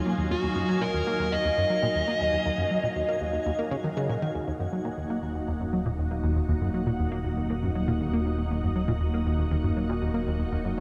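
Bathed in a vast, echoing cathedral reverb, this cosmic, mysterious ambient excerpt pairs a lush, vintage string machine holding sustained chords with a tight, driving sequenced synth riff of detuned sawtooth bite treated with chorus, phaser and analog delay, while a twinkling granular shimmer glints in the background until 4.4 seconds, a dark, overdriven electric lead guitar carries a brief melody, and a fat, nasal analog bass thick with tube saturation enters at 4.3 seconds.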